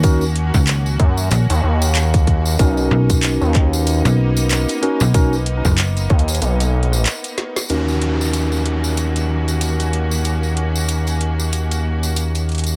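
Opening at once with bright, biting symphonic strings holding Ebm7 and Bmaj7 chords through vintage 12-bit sampler grit and sidechain pumping, tine electric piano stabs with digital delay, a snappy slap-like FM bass, a tight electronic kick, a drum-and-bass kit of woody snare, metallic hats, handclaps and rim clicks, and a jingly tambourine, this playful, funky glitch hop cut at 94 BPM in Eb minor swings its 16ths, adds a gritty, nasal driven synth bass at 1.0 s, drops the FM bass at 6.1 s and the kick at 6.2 s, and after a short break and drum fill brings in a background downlifter at 7.7 s, all in a dry mix.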